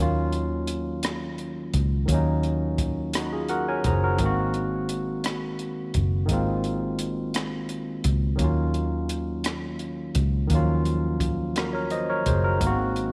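A slow six-eight groove at 57 BPM, counted in dotted quarters with a straight feel, carries this yearning, late-night R&B in E-flat dorian, cut from a longer piece. A barky tine electric piano, bright and lightly overdriven through a combo amp, sits up front with the accompaniment from the start, ranging from Eb3 to Bb5 and adding a short fill between 3.1 and 4.2 seconds. Beneath it, a vintage fingered electric bass, foam-muted, round and amped, holds the low end between Gb1 and Eb2. A compact cocktail drum kit joins at 0.3 seconds with hi-hat, kick drum and rim click, its acoustic small-room tone smooth and dark with a punchy kick and a rolled-off top. The harmony rests on Ebm9 before moving to Ab9 at 12.6 seconds, all set in light reverb and studio ambience.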